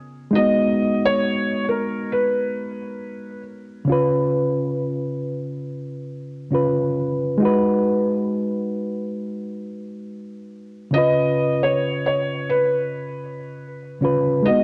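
Swung sixteenths at 68 BPM in 4/4 carry this hazy, melancholic lo-fi hip hop fragment in G# dorian, where a reedy, clean electric piano, heard up front through its built-in speakers with cassette-tape coloring and a low-pass filter, alternates between G#m7 and C#7 chords, while a soft, felt-muted upright piano, mellow and intimate, plays a brief melody from 0.4 to 3.4 seconds and returns at 10.9 seconds, the whole set in moderate spring reverb and worn, warbling old tape with drifting pitch.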